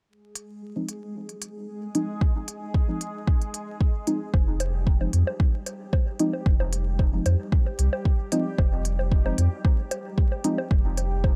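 Set in a digital ambience laced with vinyl crackle, this meditative, nocturnal dub techno excerpt in F minor at 113 BPM opens with a bubbling, resonant stepped-filter texture, smooth electronic hi-hats and a deep, nasal chord stab on Fm7 carrying chorus, phaser, dub echo and a filter sweep; a tape-warm kick arrives up front at 2.2 seconds, and at 4.3 seconds a clean sine sub bass and analog bongos with dub echo join, the texture, stab, bass and bongos all pumping under sidechain.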